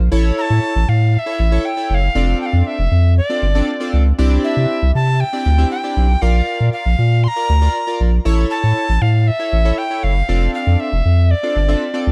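A dry, dark-toned mix carries this upbeat, summery dance-pop cut in F major at 118 BPM, where a thick, saturated sub bass sits up front from the start, glossy chorused retro synth keys with pulse-width shimmer and a filter sweep fill the middle, and a breathy, reedy alto recorder with vibrato and digital delay carries the melody from 0.4 seconds over chords moving through A, F6, Cadd9 and Bb.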